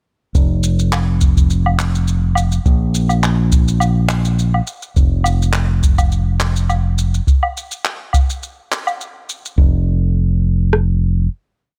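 A dry recording of a relaxed sunset chillout piece, in which a soft vintage rhythm box lays down a deep, tape-tinged kick and rim click beneath a quieter, natural-sounding layer of shaker, handclaps and low woodblock playing a light lounge beat, while a dark, round, punchy fingered electric bass sits up front with long gliding notes, the shaker layer dropping out at 9.6 seconds and the bass holding a final note to 11.3 seconds.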